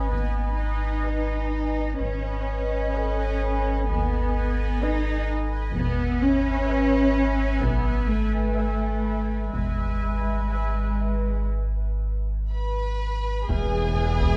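Cinematic suspense film score with a mysterious, eerie mood, where a bubbling, resonant sawtooth texture with chorus and reverb holds sustained chords over a deep, round sub bass drone, an up-front cello section and a distant double bass section, while a clear, intense chamber violin section carries the melody above a lush, very quiet viola accompaniment, a bright, metallic vibraphone rings briefly from 3.0 to 5.8 seconds, and a smooth studio violin line, a fingerpicked harp riff and a hard-stick taiko ensemble join near the end of this excerpt cut from a longer piece.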